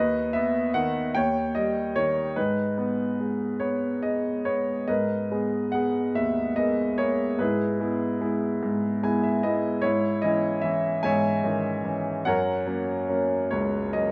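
Melancholic and dark, this short cut from a longer classical piece is a lyrical solo piano work in G# minor, moving at a slow 49 BPM counted in dotted quarters in 6/8, with a rubato feel that lets the pulse breathe. The grand piano plays alone throughout, its clear tone and long sustain placed up front, ranging from C#2 up to G#5. The opening phrase settles from Badd11/D# through D#7 onto G#m, and a second passage begins at 4.9 seconds with G#madd9 before passing through E/G# and C#madd9/G#. A brief piano fill arrives at 8.6 seconds, and the harmony later comes to rest on F#. A moderate recital hall reverb surrounds the instrument, giving the notes a natural, spacious decay.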